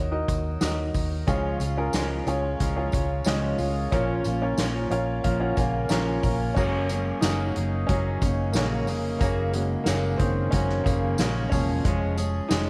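Anthemic, piano-driven pop in this short excerpt: a woody, up-front upright piano plays a fill from 4.6 s into a solo from 6.6 s, over a dark, round muted electric bass, a distant, roomy drum kit played with soft mallets, a jingly tambourine in the background, and a full-bodied fingerpicked steel-string acoustic guitar riff that enters at 1.3 s, all in a small, lightly reverberant room.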